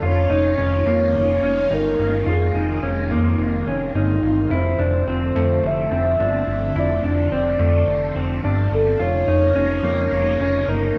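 From the first moment, a soft, round octave-layered synth lead sings the melody through chorus, phaser, shimmer reverb and digital delay over swirling sustained chords from a phased string machine, dark, clean arpeggios on a mellow electric guitar and an up-front, fat, detuned sawtooth analog bass, making a floating, ethereal dream pop passage at 107 BPM that moves between Db69/F and F6, cut from a longer piece and heard through a moderate concert hall reverb and worn, warbling cassette tape with pitch drift.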